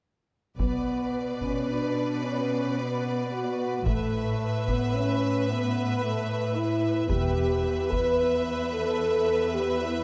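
Mellow French horns sustain chords at the heart of this dark, epic orchestral film-score excerpt in 3/4, with an expressive, up-front cello section carrying the bass, a clear, lush violin section bowing the melody above a soft-attack second violin line in the background and smooth viola accompaniment, woody double basses appearing briefly at three points, and a close, dry taiko ensemble played with hard sticks until 8.2 s, heard in a moderate recital hall reverb.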